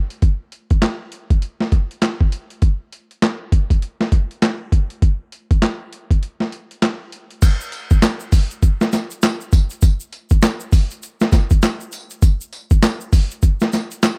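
Bouncy and flirty, this R&B excerpt rides a swung 16th-note groove on a gritty, pitched-down boom bap drum kit, up front with a thumpy kick, a high-tuned snare, handclaps, hi-hat, tambourine and crash cymbal, all compressed and overdriven. After a break from 6.2 to 7.4 seconds, a grainy, bright egg shaker joins in the background for the second section. The sound is dry and close, like a 1970s studio recording.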